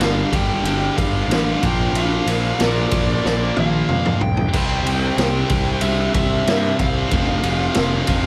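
Hard rock at 93 BPM in a straight 4/4, heavy and menacing, this short cut features a dark, distorted lead guitar carrying a bluesy melody over two bright, picked distorted guitars playing a riff in the background, a growly fuzz bass, and an up-front, gritty garage drum kit with a boomy kick and a rolled-off top that plays a fill from 3.2 to 4.5 seconds, all in a small, lightly reverberant room as the chords move from G5 through Bb and C to F5.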